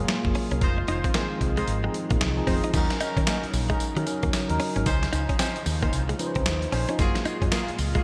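Confident and slick, this swung new jack swing R&B excerpt sets a mellow, chorused tine electric piano over a shimmering pulse-width pad, with a bright, direct clean guitar riff in the background, a growly fretless bass, up-front gritty sampler-style drums with gated reverb, and distant jazz-style horn stabs with digital delay entering at 0.6 seconds, all in a lush hall with bright 1980s-style digital production.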